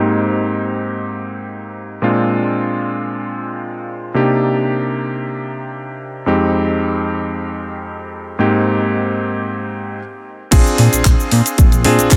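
Nu-disco with a groovy, feel-good swing, this short excerpt opens on a vintage electric grand piano, up front and clangy in its low register, carrying the accompaniment through a low-pass filter and delay in a dreamy mix soaked in huge ambient reverb. After a brief stop at 10.0 seconds, the drop lands at 10.5 seconds, bringing in a punchy, up-front electronic kick, a glossy, retro chorused synth bass with a mellow, detuned tone, and a house kit of crash, handclaps, hi-hat and shaker, dulled by low-pass filtering.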